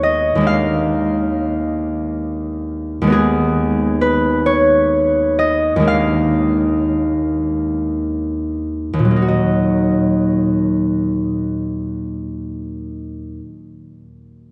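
In a six-eight metre with free, rubato timing that slows from 1.8 to 9.3 seconds, this gentle, mysterious classical fragment features a solo concert harp. The fingerpicked strings ring out, sitting up front yet bathed in a long, wet cathedral reverb that places the listener further back in the room. An opening passage gives way to a brief contrasting section at 9.3 seconds, where the harmony settles onto a minor chord before the fragment breaks off.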